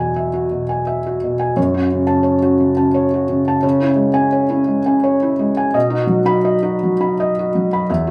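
A felt-muted upright piano carries this short neoclassical minimalist fragment alone, its thick felt giving every note a soft, dark, mellow cast while the action noise of the instrument stays plainly audible. The playing is in three and moves with a rubato feel, stretching and relaxing the pulse in a reflective, intimate mood. Across its eight seconds the harmony passes from Eadd9 to F#m, then to C#m, and settles on B at 5.7 s, with the piano ranging from E2 up to B5. The instrument sits up front in a small, wet room whose brief reverb lends a natural sense of space around the muted tone. Cut from a longer piece, it captures a quiet moment of private contemplation.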